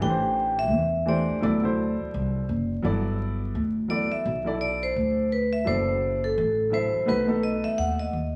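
A bright, ringing vibraphone struck with hard mallets, motor off, takes a cool, smoky solo across this 8-second jazz-hop excerpt at 85 BPM with a 16th-note swing, over an intimate grand piano with audible action noise and a woody, growly pizzicato upright bass moving through Am7, D7, G6, D13/F# and B7, all wrapped in large-studio reverb, vinyl crackle and the feel of a band playing live in one room.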